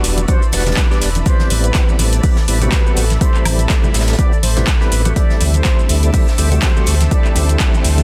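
This moody, smooth deep house excerpt opens with a dark, detuned analog pad, percussive tonewheel organ stabs with light overdrive, key click, slow rotary speaker and tape echo, and an up-front sine sub bass with octave, all three sidechain-pumped. Alongside them play an overdriven deep house kit of handclaps, metallic hi-hats, shaker and woodblock, a very quiet brushed jazz kit, a distant, rich violin section that also pumps, and a faint, nostalgic warbly tape-like pad. Soft-handed, low-tuned congas join at 0.2 s, and a round, horn-like synth lead with subtle chorus and tape echo arrives at 0.3 s with a punchy, overdriven electronic kick, all over Em7, Am9 and D9sus4 chords in a dense, heavily limited mix with studio reverb.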